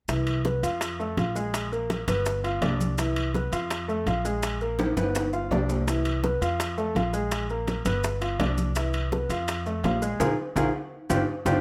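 Light reverb gives this short Afro-Cuban jazz clip a natural, slightly airy space, with the baby grand piano and the woody, thumpy upright bass placed up front. At a brisk 166 BPM in straight 4/4, tuned to A4 = 436 Hz, the mood is sophisticated and danceable. The piano comps through a cycling progression of Cmaj7, F, Abmadd9 and G7, while the pizzicato steel-string bass anchors the low end. A percussion section of bright, thin-skinned congas, tight high-tuned bongos, ringing metal-shell timbales heard from a distant large room, and grainy, mellow maracas drives the groove, with the congas and bongos sitting in the background. A drum fill arrives at 4.8 seconds, and from 10.2 seconds the band hits a joint accent over Bb5 and G5 chords with a second fill as the cut ends.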